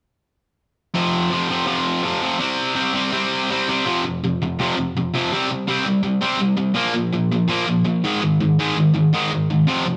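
Punk with a rowdy, energetic charge, this short cut from a longer piece features a lone overdriven electric guitar, bright, picked and double-tracked up front in a lightly reverberant live room, playing power chords on F, C, B-flat and A-flat from 0.9 to 10.0 seconds.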